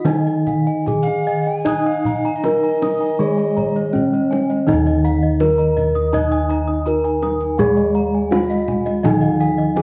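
A ringing bronze metallophone struck with a wooden mallet carries the up-front melody in this serene, ceremonial gamelan excerpt in Eb slendro at 73-83 BPM in a straight 4/4, joined by a second metallophone accompaniment with shimmering paired-tuning beats, a close-miked, dry, full metallophone and round, mid-forward bossed gongs both playing arpeggios, deeper beating gongs on the bass line, and a tight, vintage-sounding kendang, while a breathy, hollow alto recorder with chiff and vibrato adds a second line from 1.0 to 4.0 seconds, all set in a moderate recital hall reverb.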